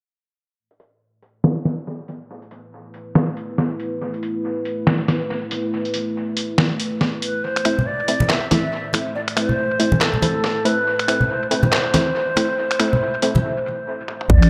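A swung, half-time deep dubstep groove begins at 0.7 s on a gritty, pitched-down sampler-style kit of snaps, claps, hi-hat, snare and toms, thinned by high-pass filtering and trailing dub echo, while a dark, detuned ambient pad of sustained chords enters at 2.9 s beneath a filter sweep for a heavy, brooding mood. An airy, reedy ney takes the melody from 7.2 s as the build-up gathers, joined by muted, plucky chord stabs and damped, low-tuned congas, both steeped in echo. After a short break and a drum fill, a deep, wobbling bass and a tight, layered electronic kick land up front at 14.3 s, all within a spring-soaked, echo-heavy mix that is cut from a longer piece.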